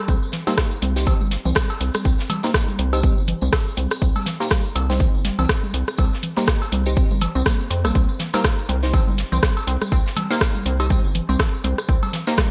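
A punchy, up-front electronic kick drives this cool, hypnotic minimal techno excerpt at 122 BPM in 4/4 with a 57% swing on the sixteenths, joined by a house kit of bright hats and rim clicks from 0.3 s, an airy acoustic kit of hi-hat, shaker and snare sitting in the background with sidechain pumping on its hats and percussion, analog-sounding electronic toms, congas and cowbell, and a jingly, close tambourine. In C minor, a rubbery, nasal square bass pumps under a squelchy, resonant blip pluck riff carrying chorus and digital delay, while a crisp, warbling wavetable chord stab enters at 0.5 s with its own delay. The bright 1980s-style digital production places everything in a small room with light reverb.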